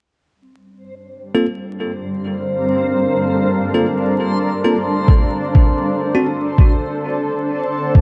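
A reversed, swelling texture with a dreamy, soft-edged triangle tone opens this hazy, meditative ambient dub fragment at 0.9 s. A bell-like tine electric piano follows at 1.3 s with bright, clean stabs, passed through a low-pass filter and dub echo. A cloudy, blurred granular pad then joins up front, carrying detuned unison chords that slowly evolve under a filter sweep. The harmony rests on G minor, moving from Gm11 to D7 at 5.1 s, where a sampler-style electronic kick arrives, pitched down, compressed and muffled, with a thumpy, tape-warm weight. The track moves at 100 BPM in 4/4 with a light 16th-note swing, set in a moderate echo chamber reverb under a layer of vinyl crackle.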